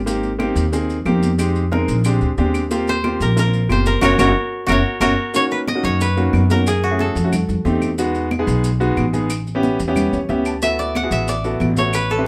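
A fingerpicked koto carries the melody up front in this sunny, lively Afro-Cuban jazz excerpt, sounding briefly at the very start and then returning at 2.9 seconds to lead through to the end. Beneath it, a pizzicato upright bass with gut strings gives a thumpy, up-front low end, while a clear baby grand piano supplies natural-sounding chords built on rich extended harmonies such as Abmaj9, Bb13 and Bmaj7. The rhythm section moves at a straight 182 BPM in 4/4, with ringing, high-tuned congas struck with hard hands and dry, woody claves sitting in the background, and grainy, band-limited maracas adding a mellow, vintage texture. After a band accent from 4.0 to 5.3 seconds, the music settles into B major for a second section, and the piano steps forward with a short fill at 10.0 seconds. The band plays live in one room, wrapped in a wet studio reverb that adds a touch of space, and the clip is cut from a longer piece.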